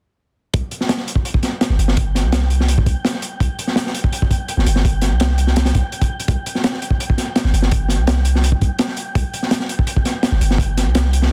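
A dense, heavily limited modern master with little reverb carries this dark, raw drum and bass and jungle excerpt at 167 BPM, where a gritty, saturated breakbeat kit with a punchy kick, medium-tuned snare and rolled-off top sits up front beside a deep, mellow 808-style sine bass of long decaying notes from 0.5 seconds, while a breathy, wind-like tuned noise texture with its own reverb hovers in the background from 1.5 seconds.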